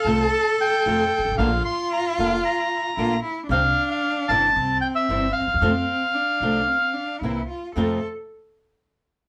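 Playful and nostalgic, this tango in F major moves at 113 BPM in 4/4 with a rubato feel, as a band plays live together in one room under a wet studio reverb. A reedy, vintage bandoneon sits up front carrying the melody, its band-limited tone giving it an old-record character before it drops out at 7.2 seconds. Close beside it, a bowed cello adds a second line with expressive vibrato, soft attacks and portamento slides, its single player heard in close, intimate detail. A fingerpicked flamenco guitar supplies the accompaniment, its finger squeaks audible, while a pizzicato upright bass on gut strings gives a woody, thumpy foundation. The harmony moves from F through Bb, Csus4 and C back to F, then turns on a C7 and resolves to F at 7.8 seconds, where this cut from a longer piece heads into a new section.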